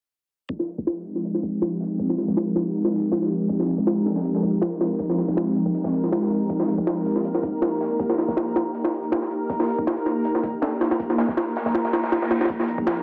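This drum and bass excerpt in the jungle style opens at 0.5 seconds with two drum kits: an up-front, overdriven sampler-style kit with a thumpy kick, high-tuned snare and pitched-up, compressed grit, backed by a crunchy acoustic breakbeat kit with a medium-tuned snare and rolled-off top sitting in the background. Moving at 160 BPM in F minor with a slight swing on the sixteenths, the mood is frenetic yet atmospheric. At 1.0 seconds an ethereal pad enters up front, holding detuned, chorused chords that move from Fm9 to Eb at 6.5 seconds and back to Fm9, its mellow sound carrying a moving notch and a slow attack. A reversed, granular texture rises above it in a dreamy haze, while a filter sweep runs across the whole passage. Near the close, a reverse cymbal appears in the background at 12.0 seconds, all set in a reverberant digital room under a dense, heavily limited master.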